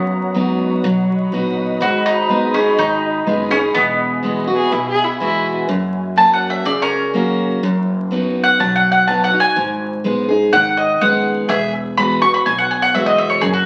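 The recording sounds like a very old 78 rpm record, with vinyl crackle over a wet, large-studio reverb. It is a short cut from a longer piece of honky-tonk and classic country, heartfelt and down-home in a straight 4/4. Up front, a bright picked mandolin carries the melody with its doubled strings and takes a solo from 5.7 seconds to the end. Beside it sits a full-bodied dreadnought steel-string guitar, picked, with audible finger squeak. A woody, thumpy upright bass plucks gut strings in the background. An ethereal, airy pad with ensemble chorus holds mellow sustained chords through the opening section and returns for the final instant, while a clear, focused fiddle with light vibrato briefly bows a second line from 4.6 to 5.6 seconds.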